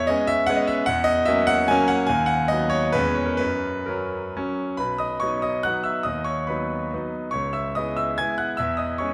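In a rubato 3/4 lilt of dotted rhythms moving between 119 and 156 BPM, this short cut from a longer romantic classical dance in B major sets a brilliant, polished, up-front concert grand piano alone from its deep bass to high treble, with long sustain ringing into a wet concert-hall reverb as its graceful, rustic phrases pass through C#m7, F#7 and B harmonies before a new section begins at 4.8 seconds.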